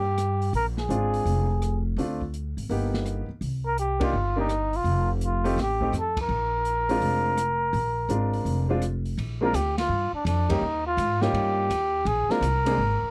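A breathy, whispered flugelhorn carries the melody over a woody, growly upright bass from the very start of this playful, swinging small-group jazz excerpt, with a dark, smooth drum kit joining at 0.2 seconds and a clear grand piano, its action noise audible, accompanying from 0.9 seconds, all captured in a dry, close 1970s-style studio sound punctuated by full-band accents.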